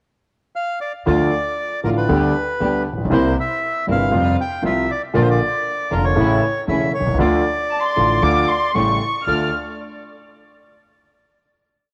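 This short, complete tango sounds like a home cassette recording, with light reverb and a small room's ambience around the players, and a passionate, tense mood carried by a rubato feel. A bright, reedy bandoneon sits up front with a motif-based melody in period phrases, its tone colored by cassette tape and tape echo, entering at 0.6 seconds within the brief pickup bar. From 1.1 seconds a concert grand piano joins, intimate and polished with deep bass, long sustain and audible action noise, playing a milonga rhythm alongside a woody, pizzicato upright bass on steel strings. In the background a studio string section adds bowed stabs in the same milonga rhythm, with a gut-string tone and light vibrato. At 7.7 seconds a violin section comes up front with a smooth top, answering the bandoneon in the rests of its melody before the piece settles on a closing D minor chord.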